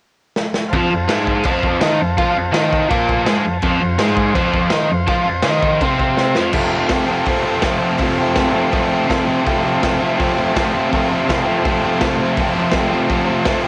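A straight 4/4 garage rock beat at 165 BPM kicks off with a drum fill at 0.4 seconds, the acoustic kit up front with a boomy kick, a medium-tuned snare, hi-hat and crash sounding saturated and gritty in a small, pumping room with a rolled-off top. A biting, double-tracked guitar riff, picked and overdriven, drives the music on an F chord in F mixolydian. Meanwhile a vintage combo organ holds buzzy, heavily vibrato-laden chords in the background and breaks into short fills around 3.1 and 8.9 seconds, while a second drum fill at 6.2 seconds carries this raw, swaggering cassette home recording with light reverb into a second section at 6.5 seconds.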